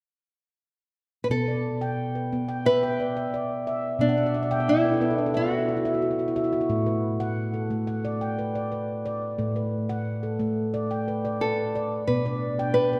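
A ringing stainless-steel handpan sits up front and carries this hypnotic, meditative world piece, its arpeggios struck with sharp finger strokes and coloured by a boxy small-room character, with a fill beginning at 4.1 seconds. A small, fingerpicked nylon-string guitar enters at 1.2 seconds with an acoustic melody treated with tape echo, returning briefly near the close. At 12.1 seconds a glass harmonica adds sustained chords in a pure, ethereal tone, with a slow attack and gentle beating. The tempo holds at 89 BPM in a straight 4/4, with the harmony in B minor moving from Bm to A13sus4 and back to Bm. A wet concert-hall reverb wraps the dark, warm production, and the recording is cut from a longer piece.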